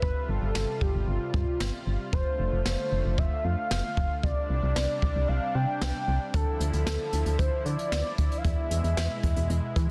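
A velvety sawtooth synth lead with chorus, digital delay, vibrato and portamento carries the melody over a lush, nasal detuned pad, a round, dark FM bass that sits up front, and a jazz brush kit with a punchy kick and softly clipped snare in this nocturnal, melancholic synth-pop excerpt at 114 BPM, moving through G7sus4, F6, Csus2, Dmadd9 and E under light reverb and a dense, heavily limited master.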